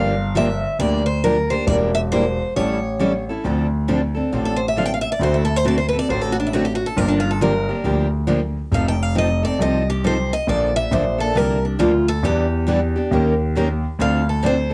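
A dark, warm production with light reverb frames this bittersweet, swinging excerpt of acoustic string swing in the jazz manouche style, cut from a longer piece. A boxy, parlour-style steel-string guitar carries the melody up front and takes a solo from 3.4 seconds, while a full-bodied dreadnought with fresh strings and a concert guitar with finger squeak, set in the background, provide picked accompaniment. A concert grand piano supplies the bass line with deep, long-sustaining low notes and audible action noise, moving through minor-key changes built on seventh chords.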